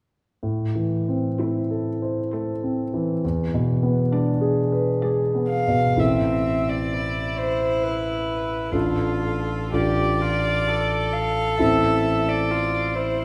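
A dark, intimate violin carries the melody of this slow, solemn piano trio movement, played by one bowed player close and up front, with light vibrato, a soft attack and a sul tasto tone that keeps its upper notes smooth. Beneath it, a single bowed cello adds a second line with a clear, nasal, floating quality, also played sul tasto with gentle onsets. The warm concert grand piano opens alone at 0.4 seconds as accompaniment, with deep bass, audible action noise and a vintage character, before violin and cello join at 1.4 seconds. In A minor at 64 BPM in 3/4, with rubato and uneven beats, the elegiac music moves through Am, E7, Dm/A and back to Am, and a new section begins at 6.0 seconds. A wet recital hall reverb, as in a church or concert hall, surrounds the trio, and the passage is cut from a longer piece.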